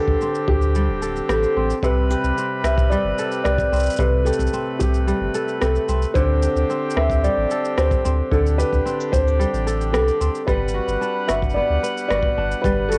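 A straight 4/4 pulse at 111 BPM drives this delicate, hopeful folktronica passage in D mixolydian, cut from a longer piece. A dark, punchy acoustic kick sits in the background with a gritty, rolled-off top, joined at 0.2 seconds by an overdriven electronic shaker and rim click. A round, sine-like sub bass enters at 0.1 seconds and stays up front, its tube saturation giving it a deep, sustained body. Over this, a felt-muted upright piano carries the melody with a soft, intimate, thick-felt tone, roughened by 12-bit sampler grit and trailed by tape echo. A reedy accordion holds sustained chords, and a fingerpicked kora rings out crisp arpeggios through a low-pass filter, as the harmony moves from D7sus4 through Am7 and back before settling on Gmaj7 at 10.5 seconds. The whole passage has the mellow, homespun character of a cassette home recording, bathed in moderate spring reverb.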